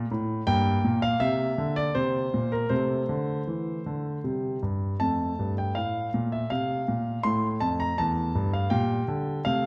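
In a straight three-beat metre, this playful, graceful classical-period sonatina passage is cut from a longer piece and played by a solo grand piano across a range from deep bass to bright upper register. The piano sits up front with an intimate, natural tone and audible action noise, its harmony moving from G minor through C and F before touching A and returning to G minor over B-flat. A moderate recital-hall reverb and a dark production surround the clear instrument.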